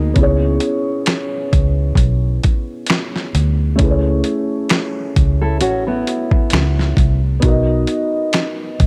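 A round, dark electric bass sits up front in this cosy, mellow lo-fi hip hop excerpt, its foam-muted, amped tone giving the low end a soft, rounded weight. From 0.2 s a dusty, sampler-style drum kit joins with a thumpy kick, a medium-tuned snare, hi-hat and finger snaps, compressed and overdriven into a gritty texture on a swung sixteenth-note feel. A felt-muted upright piano carries the accompaniment through C#m7, Amaj7/C# and Bmaj7, sounding intimate and boxy, with thick felt, audible action noise and a cassette-tape haze softened by a low-pass filter. Alongside it, a thumb-plucked nylon-string guitar with fresh strings and a deep classical body adds a second line, its tone filtered and trailed by analog delay until it drops out at 7.2 s. A light reverb wraps the mix, keeping the close, homely mood of a fragment cut from a longer piece.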